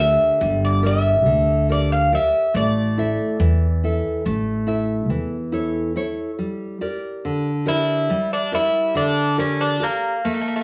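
Greek folk in a melancholic, wistful mood, this short excerpt from a longer piece moves at 140 BPM in 9/8, tuned slightly low to A4 = 437 Hz and moving between G minor and A. A bright, metallic bouzouki with picked double strings carries the melody up front, some strings doubled at the octave, over full-bodied fingerpicked nylon-string guitar accompaniment and a woody, thumpy pizzicato upright bass on gut strings. The bass drops out at 6.0 s, leaving bouzouki and guitar in a small room's light reverb.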